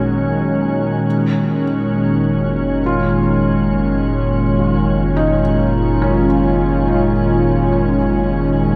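A slow, straight 4/4 pulse at 52 BPM carries this luminous ambient fragment in F# major, cut from a longer piece and lasting 8.8 seconds. Up front, a smooth, detuned sawtooth pad with a slow attack holds sustained chords through chorus and shimmer reverb, while a filter sweep moves across it for the whole passage. Beneath it, a felt-muted upright piano plays soft, intimate arpeggios with audible action noise, its mellow tone trailed by tape echo and shimmer. A round, dark analog bass sits low and deep, and a calm, organ-like drone with a wave-folded sine character adds a long, slowly blooming unison layer through ensemble chorus and its own built-in reverb. The harmony opens on G#5 before settling onto F#maj9 at 1.1 seconds. A lush hall reverb with a 2.8-second decay gives the whole blend a wet, glowing sense of space.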